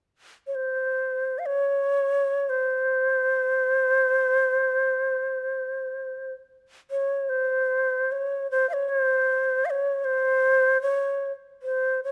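Austere and calm, this short passage of Japanese traditional chamber music moves in free time, carried entirely by a solo end-blown bamboo shakuhachi that enters at 0.5 s and holds to a narrow range between C5 and F5. The breathy, warm tone has a soft attack and vibrato, sitting up front in close, detailed miking with light reverb. The phrase shifts into a second section at 6.9 s before the fragment, cut from a longer piece, stops at 12.1 s.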